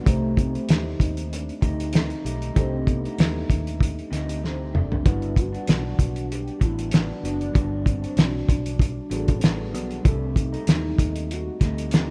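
This nostalgic, laid-back slice of indie and bedroom pop, cut from a longer piece, opens on a lo-fi electric guitar through a small old amp, slightly broken-up and compressed, with subtle chorus and a warbly pitch drift. Alongside it sits a worn, slightly out-of-tune tine electric piano in the background, colored by cassette tape. From 0.1 s a velvety synth lead carries the melody, its detuned sawtooth-and-triangle unison smooth and sustained with vibrato and subtle chorus, though it also stays back in the mix. Underneath, a vintage foam-muted fingered bass gives a dark, round, punchy low end. A cloth-damped drum kit sits up front with a muffled, gritty sound, a fat snare, a tight kick and a rolled-off top, drives a lightly swung 4/4 groove, and plays a fill between 4.4 and 5.1 s as the harmony moves from Cm6 to Gmaj7 before returning to Cm6. Light reverb and a rough home-demo mix finish the sound.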